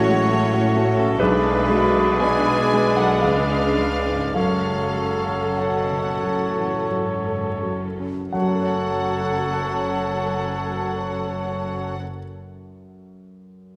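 Heard in a concert hall with a moderate, two-second reverb, this brooding, tragic romantic movement for piano and orchestra in F# minor unfolds slowly in 3/4 at 40-70 BPM, with rubato phrasing that slows through the opening 8.3 seconds. A clear, polished grand piano carries the melody close and present, its long sustain and audible action noise lending intimacy, while a very quiet violin section shares the melody with soft-attack, lush vibrato. Around them, a second, more distant and intense violin section, a pure, hollow silver flute, a gently vibrato-touched oboe and a bright clarinet in the background weave secondary lines. Accompaniment comes from an intense viola section in the background and a solo bassoon, with a mellow French horn section holding sustained chords, and a faint cello section and an expressive double bass section anchoring the bass. The harmony moves through F#m/A, G#dim/B and C#7b9 toward F#m, and a barely audible timpani, struck with medium mallets, enters at 8.3 seconds. 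The orchestra falls away at 12.0 seconds, leaving the piano to ring on until 13.8 seconds in this fragment of a longer piece.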